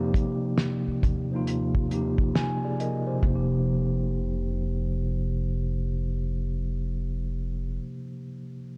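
Tape-tinted and softened by a studio reverb, this short lo-fi hip hop excerpt cut from a longer piece feels hazy and nostalgic, moving at a relaxed 68 BPM in 4/4 with a swung sixteenth-note feel and tuning a touch below standard at A4 = 438 Hz. A mellow, clean tine electric piano carries the harmony up front, opening on an F5 chord and heard through its built-in speakers, and it plays a brief fill at 1.9 s. Beneath it, a woody pizzicato upright bass with steel strings sits warm and up front in the low register. A cloth-damped drum kit of kick, snare and hi-hat thuds along dry and dark, with a fat snare, a tight kick and a rolled-off top, before dropping out at 3.5 s. The piano and bass carry on together, with the bass stopping at 7.8 s and the piano lingering briefly after it.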